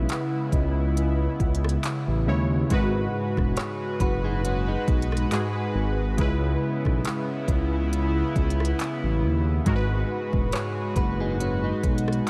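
Sensual and moody, this slow contemporary R&B piece, cut from a longer work, drifts over a gentle swung feel in 4/4, alternating between C#m7 and G#m7 chords. Warm, round analog keys with chorus and a shimmering, warbling pulse-width pad carry the harmony throughout, while a smooth, nasal synth bass sits up front with a mellow vibrato. An electronic drum kit with a knocking kick, smooth hi-hats, handclaps and rim clicks adds overdriven grit to the groove. A very quiet, bell-like celesta sprinkles delicate high notes until about 6.6 seconds, and a bright, clean direct-recorded electric guitar enters at 3.6 seconds with picked arpeggios touched by subtle chorus and delay. A cathedral reverb soaks the whole mix, giving it a dreamy haze.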